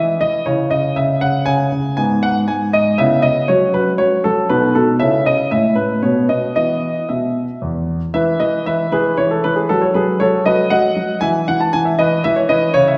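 A playful, elegant classical-period piano sonatina in E major at 118 BPM in 3/4, this brief excerpt features a solo grand piano, polished and up front, ranging from E2 to A5 and moving through C#m, B7 and A before settling on E, all bathed in a recital hall's 1.5-second reverb with lossy compression artefacts.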